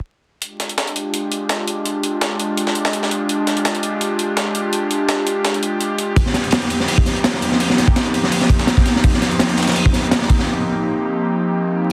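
A dense, heavily limited master carries a layer of vinyl crackle, with a lush hall reverb and a small-room ambience around the parts. This nostalgic yet frenetic drum and bass and jungle excerpt, cut from a longer piece, opens at 0.4 seconds with an up-front, sampler-style breakbeat kit of compressed hi-hat and high-tuned snare, both thinned by a high-pass filter. Above it, an airy, breathy pad holds sustained chords with a slow attack and long release, its warbling chorus and vintage 12-bit sampler grit giving it a faded, dreamy colour. At 6.2 seconds the harmony moves from Fm69 to Cm7/F as a second, louder breakbeat kit arrives, acoustic and dark with a saturated crunch, a punchy kick, a high-tuned snare and a rolled-off top. Both kits drop away by 10.5 seconds, leaving the pad alone through a short break to the end.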